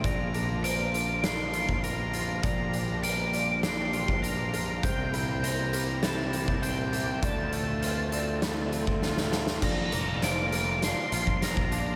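Post-rock with a brooding, melancholic mood, this excerpt from a longer piece moves at 100 BPM in a straight 4/4, its chords shifting from Bb6 through C7 and Dm7 before returning to Bb6 at 9.6 seconds. An oversized, low-tuned drum kit sits up front with a boomy kick, dark cymbals and a gritty, saturated room sound, while a punchy fuzz-laden electric bass with overdrive anchors the low end. High above, an octave-fuzz lead guitar carries the melody with a dark, distorted tone trailed by delay. In the background, a twangy, bright clean guitar picks arpeggios through chorus and delay, and a felt-muted upright piano adds soft, intimate arpeggios with audible action noise until 11.1 seconds. A very quiet chamber string section holds earthy, lightly vibrato-tinged sustained chords. Drum fills at 9.0 and 9.6 seconds open a build-up to the close, and the whole mix is soaked in a huge, dreamy reverb.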